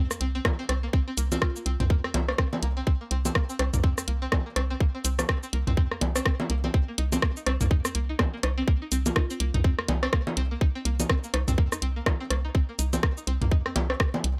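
A swung 16th-note groove at 124 BPM in 4/4 drives this hypnotic, clinical minimal techno cut from a longer piece in C minor. A tight electronic kick sits up front, joined by a garage drum kit of cabasa, warm hats and rim clicks, and a second, overdriven electronic kit of bongos, rim clicks and toms treated with digital delay, all re-recorded in a small room. Beneath them, a hollow, knocking FM bass holds a low C with a bouncy, punchy attack and pumps through sidechain compression. A string-like resonator pluck, twangy and warbling with a filter sweep, carries the riff between Bb3 and G4, colored by chorus, phaser, digital delay and the same pumping. A buzzing, woody marimba struck with medium mallets surfaces only briefly in the background on F4, at 1.3 and 9.1 seconds, roughened by 12-bit sampler grit and delay. The mix is dry and close, with little reverb.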